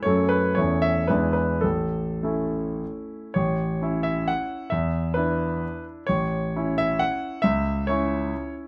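A clear concert grand piano, polished and up front with a deep bass, plays alone from 0.0 to 8.7 seconds in this short cut from a longer romantic classical piece, a wistful, capricious triple-time dance in A major with dotted rhythms and rubato that ranges between 97 and 147 BPM, its opening chords moving from F#m through A/E and E7 to A before a second section at 3.4 seconds passes from E5 to A and C#m, heard in a moderate studio reverb.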